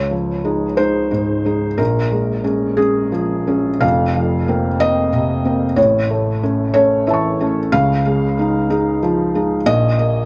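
A felt-muted upright piano plays alone in this short neoclassical minimalist excerpt, its soft, dark tone sitting up front with the audible noise of its action close at hand. Around 61 BPM in a rubato 6/8, the mood is peaceful and hopeful, centered in Db major. The piano spans a broad register from F1 up to C#6, moving through Dbadd9, Bbm7 and Fsus4, then a striking A chord at 5.8 seconds before settling back on Dbadd9 at 7.7 seconds. The piano carries a tape echo and a vintage, intimate character, and a light reverb surrounds it. The passage lasts about 10.3 seconds, cut from a longer piece, and closes on a chordless moment at 9.7 seconds.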